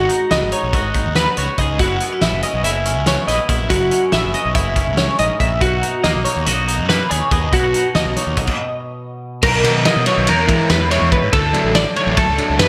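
Math rock and midwest emo in 9/8, this wistful, intricate excerpt opens with a clean, compressed twelve-string electric guitar playing arpeggios up front through analog chorus and slapback echo. Beneath it sit a bright, twangy electric guitar accompaniment with lush chorus and slapback, a fuzz-laden fingered electric bass, and a loose indie drum kit with a punchy kick and rolled-off top. After a stop from 8.5 to 9.4 s, the harmony shifts through Bmaj9, E6 and Dmaj7 as a double-tracked, overdriven semi-hollow guitar enters with a riff at 9.6 s, while the twangy guitar drops out at 10.4 s, all set in concert hall reverb with small room ambience for a big arena sound.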